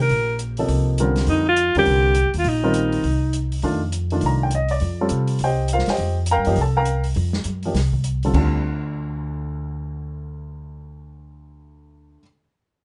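Modal jazz at a brisk, swung 204 BPM in 4/4, searching and intense, this excerpt opens on an F9sus4 with a breathy, whispered alto saxophone carrying the melody up front with vibrato until 3.5 seconds. Woody pizzicato upright bass runs throughout, and a mellow baby grand piano with audible action noise and short sustain accompanies from 0.6 seconds. An airy small-room drum kit of crash, hi-hat, snare and boomy kick, with dark cymbals, plays until 8.4 seconds as the harmony moves to Dm, all set in light reverb and a dark, warm production.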